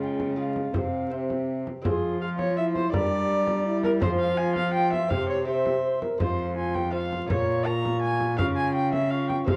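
Courtly and solemn, this short excerpt of a renaissance-style consort dance in triple time sets a distant, hollow soprano recorder melody with chiff above an up-front, gut-strung viola second line, a delicate fingerpicked lute in the background, a mellow trombone with vibrato, a rich bowed cello bass and a frame drum played with soft hands from 0.2 seconds, all in a dark production with stone-room reverb and vinyl crackle.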